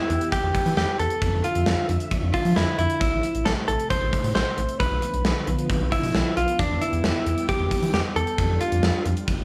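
A straight 4/4 pulse at 134 BPM drives this cool, melancholic synth-pop fragment, cut from a longer piece, with a gated 80s drum kit of hi-hat, punchy kick and medium-tuned snare sitting up front in a bright stone room. Beneath it, a round analog bass with a dark, fast-attack sawtooth and sine tone holds the low end from 0.1 seconds onward. A string machine playing full-ensemble sustained chords sits in the background, lush and vintage, its slow attack, long release and ensemble chorus giving the harmony a mellow, evolving haze. Up front, a clean, direct-recorded electric guitar carries the picked, compressed melody between D4 and C5, touched by slapback echo. The chords move from Em through Dmadd9, Am and Bdim back to Em before settling on Dm/F, all within light reverb and studio ambience.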